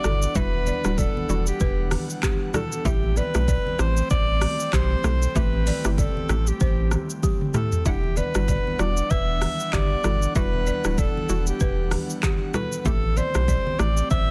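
A swung sixteenth-note afrobeats groove in 4/4 drives this smooth, hypnotic passage, with an electronic afro-pop kit of deep kick, metallic hats, handclaps, rim click, shaker, toms and a soft-clipped snare sitting up front beside a thick, saturated sub bass, while a breathy, intimate alto saxophone carries the melody through digital delay over a hollow, bouncy square-wave pluck with chorus, an airy pad pumping under sidechain, a buzzing, woody balafon riff with its own delay and very quiet low-tuned congas, as the harmony moves between Em9 and Am7 and a drum fill arrives at 7.2 s.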